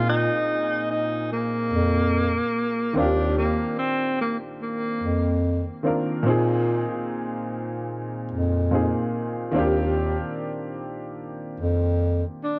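A worn, warbling tape sound colors this short cut from a longer piece, with a warbly pitch drift, a faint mains hum and a light reverb around the players. It is a mellow, nostalgic hip hop groove at 73 BPM in Eb major, with a lazy swing on the sixteenths. A breathy tenor saxophone carries the melody in a whispered, intimate subtone, with soft attacks, scooped notes and vibrato. It sounds distant and roomy behind a low-pass filter and falls silent at 5.4 seconds before returning for a brief moment near the end. A clear, woody upright piano accompanies throughout; it is slightly detuned and run through its own cassette and low-pass filter. Underneath, a mellow bass clarinet holds the low line with a light jazz vibrato until 12.2 seconds, as the harmony alternates between Bb7sus4 and Ebmaj13.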